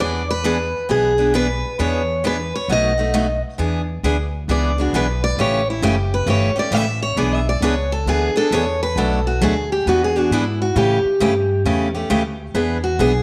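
A picked steel-string acoustic guitar carries the melody in this swinging, lively jazz manouche excerpt, sitting up front with a slapback echo and stepping into a solo at 3.6 seconds that runs to 13.2 seconds. A second picked steel-string guitar plays accompaniment underneath, and the pair differ in colour: one has the fresh-stringed warmth of its picked attack, the other a bright edge, and finger squeak shows on both. The upright bass is played pizzicato, woody, dark and thumpy, and it sits up front too. The tune moves at 134 BPM in 4/4 with a swung eighth-note feel in E mixolydian, cycling through E7, B7, A7 and a passing Bm7. A moderate echo-chamber reverb and small-room ambience give the trio a close, concert-like presence.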